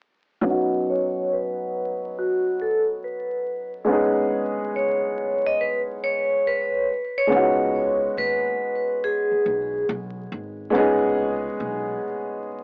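Swung sixteenths in 4/4 give this hazy, nostalgic lo-fi hip hop cut its lazy lean. A dark, boxy upright piano, softened by cassette tape and a low-pass filter, plays a C#9sus4 chord under a bright, ringing vibraphone melody struck with hard mallets and colored by slow motor vibrato, while a filter sweep runs through the opening stretch. At 7.3 seconds a thumpy pizzicato upright bass enters for the second section, and the whole excerpt carries a gritty, dry hardware sound with vinyl crackle, an AM radio tone and light reverb.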